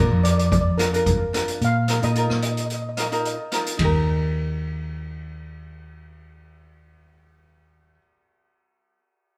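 Bouncy and carefree, this calypso fragment moves at 110 BPM in a straight 4/4 in Eb major, cut from a longer piece and played live by a band sharing a stone room with moderate reverb. A shimmering, metallic lead steel pan struck with medium rubber sticks carries the melody until 3.4 seconds, over a bright, fingerpicked ukulele and a dark, round, hollow-body electric bass sitting up front. A street-band drum kit with a boomy kick, dark cymbals, hi-hat, ride and rim click plays from 0.2 to 3.9 seconds as the harmony moves from Bb through Ebsus2/Bb to Eb at 3.8 seconds, where the second section begins.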